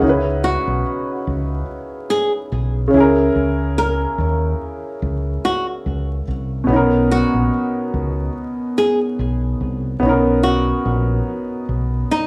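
This lo-fi hip hop excerpt opens at 0.0 seconds with a woody, vintage upright piano laying down chords over a dark, round fingered electric bass with a deep dub character, both sitting up front. At 0.4 seconds a bright, fingerpicked flamenco guitar enters to carry the melody in its middle register, its acoustic tone trailed by analog delay. The groove moves at a relaxed 72 BPM in 4/4, with a gentle 56% swing on the sixteenths that gives it an easy, lazy feel. Set in B major, the harmony drifts from C#m7 to a rootless C7b9b13 and settles on Bmaj7, lending a nostalgic, mellow mood. A small room reverb and vinyl crackle wrap the sound in a dusty intimacy, and the bass drops out at 12.0 seconds as the piano and guitar ring on briefly before the cut ends.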